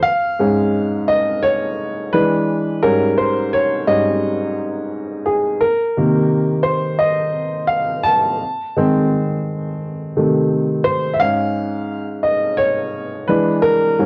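Worn, warbling cassette tape gives this short hip hop clip a drifting, wavering pitch, set in a damp studio room with a brief tail. A lone upright piano sits up front, woody and muffled by a low-pass filter, its short-sustained chords moving through a mellow, dreamy progression from Dbadd9/Ab through E7, Eb7/Ab and Cm7 to a rootless Emaj7b13. The piece has a gentle swing on its sixteenths, and the piano plays alone for the full 14.1 seconds.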